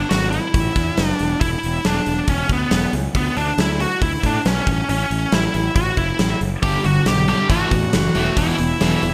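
A straight 4/4 hard rock groove at 138 BPM drives this anthemic, swaggering clip from a longer piece: a growly, punchy fuzz fingered bass opens it, and at 0.1 s an up-front big rock drum kit of hi-hat, tight kick and medium-tuned snare, bathed in gated reverb, joins. Over them, a dark, bluesy lead guitar carries the melody with distortion and digital delay over A5, E5 and D5 chords. At 6.6 s two background riff guitars enter, one bright and high-gain, the other sludgy and overdriven, thickening the bright 1980s-style digital production with its plate reverb and studio ambience.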